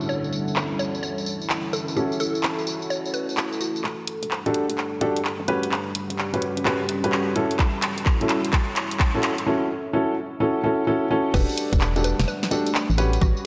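Dark, worn grand piano stabs with audible action noise sit up front in this bouncy, soulful two-step UK garage excerpt at 128 BPM in E dorian, swung on the sixteenths and moving through Dmaj9, F#m7, Em11 and A13. A cracking, tape-colored garage kit of snare, handclaps, hi-hats, tambourine and crash runs throughout, joined by a hollow, organ-like FM bass at 3.8 seconds and a tight electronic kick at 7.6 seconds. A detuned square-wave pluck carries the melody at the opening and returns for the drop at 11.3 seconds, while a smooth analog pad with 12-bit sampler grit and a filter sweep, alongside a deep, moody ambient pad, pumps to the sidechain beneath, and the whole mix is soaked in lush hall reverb for a dreamy feel.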